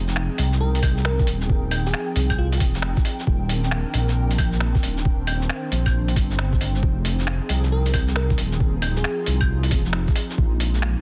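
A swung 135 BPM future garage groove in 4/4 rides on a muffled, thumpy electronic kick and a pitched-down, tape-warm sampler kit of claves, finger snaps, hi-hat and shaker, with a softly clipped snare and studio reverb. Beneath it, a deep, rumbling detuned saw bass sits up front alongside an airy, breathy pad with chorus and 12-bit sampler grit, both pumping with sidechain compression as they move through Fm9 and Cm9/Eb chords in F dorian before landing on Bb7sus4 at 10.4 seconds. A sparkling, bell-like FM electric piano with phaser and tape echo drifts in the background from 0.6 and again at 7.7 seconds, adding melancholic, nocturnal colour to a dense master flecked with vinyl crackle.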